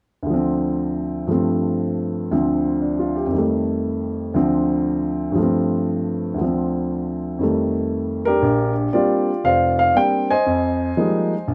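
Close, detailed microphones and light reverb place a dark upright piano up front, its woody tone and audible action noise giving this solo jazz excerpt an intimate, vintage feel. At a relaxed, playful 118 BPM swing in Bb major, the piano alone circles Dm7, G9sus4 and F9 voicings with long sustain, ranging from deep bass notes to upper-register figures. At 8.4 seconds the harmony opens onto Bb69 before turning to a mellow Fm11 near the end.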